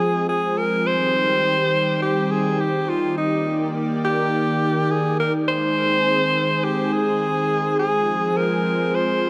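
Synthwave at 104 BPM in 4/4 with a straight feel, this short cut from a longer piece sits in C minor and carries a nostalgic, cinematic mood. A bright, punchy alto saxophone takes the solo melody up front, its forceful pop-style phrasing marked by vibrato, scooped notes and a smooth top, with delay trailing its lines. Beneath it, a lush unison pad of detuned sawtooth and square-wave tones holds sustained chords, its thick, full-bodied, warbling vintage character shaped by a slow attack, long release and chorus. The harmony moves from Fm to Cm, then to Ebmaj7 and Ab before returning to Fm at 7.8 seconds. Both parts play throughout the 9.3 seconds, bathed in a moderate, lush hall reverb with a 2.5-second decay.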